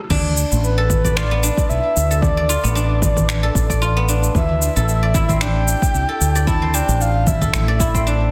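A loping 113 BPM groove in 4/4, swung at 55% on the sixteenths, drives this meditative, hypnotic slice of organic downtempo, a short cut from a longer piece held on a single Asus24 chord. An electronic kick drum with a deep, overdriven punch anchors the beat alongside a deep house kit of congas, crash cymbal, finger snaps and shaker, both re-recorded in a large room, with soft clipping on the kit's snare. Beneath them, a mellow fretless electric bass sits round, dark and up front between A1 and D2, colored by analog chorus and sidechain pumping. A fingerpicked guzheng rings out silvery arpeggios from B3 to D5, trailing delay and shimmer reverb from the first moment. At 0.6 seconds a breathy, flute-like synth lead enters with a soft attack, sustained tones and vibrato, floating between B4 and A5 through chorus, delay and its own shimmer reverb. A moderate digital room ambience frames the whole, and the master is dense and heavily limited in a modern way.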